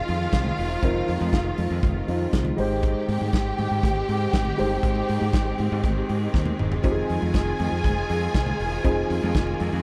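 A dry disco groove in F minor at 120 BPM, glamorous and danceable, where a bright, punchy fingered electric bass sits up front under a modern studio drum kit with a punchy kick and pumping room sound, while a dark, mellow grand piano comps, a lush, clear string section holds sustained chords beneath a rich, smooth-topped string line, and thick-skinned congas murmur in the background, moving from Fm7 to Abmaj7 and back to Fm7 after a drum fill at 6.3 seconds in this short cut from a longer piece.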